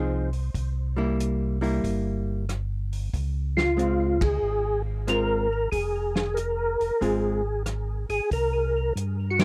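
Soul jazz organ trio in a smoky, soulful mood at 93 BPM with a swung feel, moving through Fm7, C7 and Dbmaj7 in this short cut from a longer piece. A clean, hollow-bodied archtop guitar comps up front while a round, lightly overdriven tonewheel organ carries the bass line through slow rotary speaker and chorus vibrato, and a roomy, distant soul drum kit with dark cymbals and a tight kick joins at 0.3 seconds. At 3.6 seconds a percussive tonewheel organ takes the melody with tape echo and slow rotary, and the band hits accents at 4.1 and 9.3 seconds in a dry mix with little reverb.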